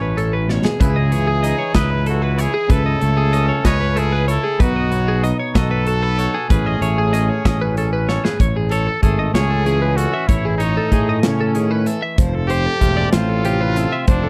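A bright, vibrato-laced trumpet carries the melody over a twangy electric guitar bathed in spring reverb, a bright, compressed twelve-string electric guitar playing arpeggios with a warbly pitch drift, and a growly, overdriven fuzz bass sitting up front. From 0.2 seconds a punchy modern studio drum kit of kick, snare and hi-hat joins, with fills at 0.5 and 8.1 seconds. This playful math rock and midwest emo piece moves in 6/8 at 63 BPM in A lydian, drifting through lush chords like Amaj9, C#m9 and B13 before shifting to Amaj7 and Fmaj7 in its second section, all in a dry mix.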